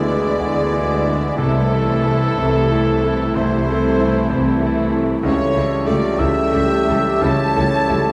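A slow, rubato 12/8 sway of about 54-64 BPM in dotted quarters carries this tragic, brooding fragment of a romantic movement for piano and orchestra in A minor, cut from a longer piece. The concert grand piano takes the melody with a clear, polished tone and audible action noise, ranging from C2 to A4 yet sitting somewhat in the background, while a very quiet violin section also carries the melody on a single E4. Around it, a close, lush upper violin section, a cor anglais with soft attack and light vibrato, an airy, hollow silver flute and a very quiet clarinet weave second lines. Beneath, a viola section and a bassoon fill in the accompaniment, mellow French horns and clear trombones hold sustained chords, and tuba, cello section and distant double bass section anchor the low register. The harmony moves from E7/D to Am/C at 1.4 seconds and to A7/C# at 5.2 seconds, and a vast cathedral reverb bathes the ensemble in echoing space.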